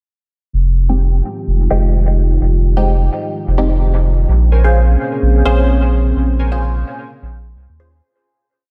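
A round, deep sine sub bass opens this nocturnal, hypnotic dub techno piece at 0.5 s, sitting up front with long gliding notes and a touch of tube saturation. Almost at once, muted sawtooth chord stabs arrive, sparse and echoing, with one detuned shape moved in parallel through a phaser and dub echo while a filter sweep runs across them. A moody analog pad fades in beneath on a slow attack, its sawtooth and triangle layers and sub octave held in sustained chords that shimmer with chorus and phaser. The harmony moves from Fm9 to Bbm9, and at 4.5 s a faint, warbling lo-fi keys riff enters briefly, its nostalgic detuned tone trailing chorus and dub echo. The lightly swung 16ths and light reverb keep the groove steady until a fade-out begins at 5.5 s and carries the piece to its close.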